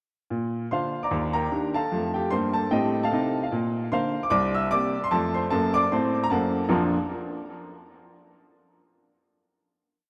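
Jazz in the stride piano tradition, this short, complete piece is exuberant and swinging, with a lilting swing feel throughout. A lone warm baby grand piano carries it from 0.3 to 7.0 seconds, its boxy, up-front tone ranging from Bb1 to E6. The player sets a stride bass under a tune stated in filled octaves, moving through Ebmaj7, F9 and C7 before settling on a closing Bb chord at 6.7 seconds. A touch of delay sits on the piano, and a lush plate reverb soaks the dreamy mix, letting that last chord hang in the air.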